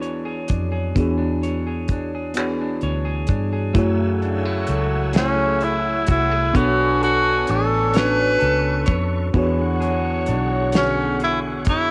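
A home cassette recording with light small-room reverb carries this late-night, sultry slow R&B in 6/8 at 43 BPM, set in F# minor over chords moving from E13 to F#m9, Bm9 and back to E13. Cloth-damped, thuddy drums with a fat snare, finger snaps and tape coloring sit up front beside a dark, foam-muted fingered bass, while a mellow FM electric piano with chorus and phaser and a twangy, slightly broken-up electric guitar fill out the texture. At 3.7 seconds a clean tonewheel organ with key click and fast rotary speaker joins in the background alongside tight, clear horn stabs, and at 5.2 seconds a breathy, whispered tenor saxophone takes the melody with vibrato and scooped notes.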